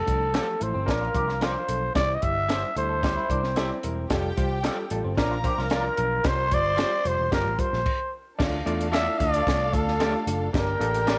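A straight, driving 4/4 groove from a dry compact drum kit, with a punchy kick, high-tuned snare and dark cymbals, sets an urgent, uptempo 1960s-style soul feel alongside a round, foam-muted picked bass and a barky, overdriven reed electric piano pulsing with fast tremolo. Up front, a raspy, growling trumpet carries the melody with scooped notes and light vibrato, while two twangy, slightly broken-up electric guitars add background stabs and a picked riff that drops out partway; a lush bowed violin section joins at 4.1 seconds. After a brief stop at 7.9 seconds, the music turns toward a minor chord as a very quiet, mellow vibraphone enters at 8.9 seconds, all set in moderate spring reverb in this fragment cut from a longer piece.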